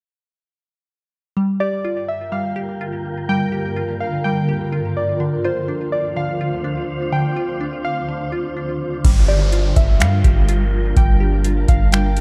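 A half-time 4/4 groove at 125 BPM carries this ethereal, melancholic atmospheric cloud-rap fragment, where a crystalline wavetable pluck with chorus and delay plays arpeggios and a warbling, lo-fi dusty pluck, also with chorus and delay, sings a melody over a blurred granular cloud pad that pumps with sidechain and an airy, wind-like tuned noise texture, moving from Gm7 to Dm7 until a booming analog drum machine with a deep kick, metallic hats, finger snaps and crash cymbal arrives at 9.0 s up front alongside a round, soft 808-style bass and an electronic downlifter, within a dark production with little reverb.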